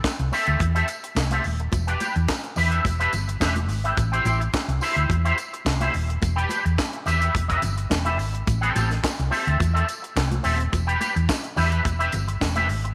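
A bright, twangy envelope-filtered electric guitar with an ensemble chorus rides up front over a round, dark hollow-body bass, a dry, tight funk kit with high-tuned snare and handclaps, and ringing congas and a jingly, distant tambourine in the background, cycling between Am7 and Em7 in this danceable, driving disco excerpt.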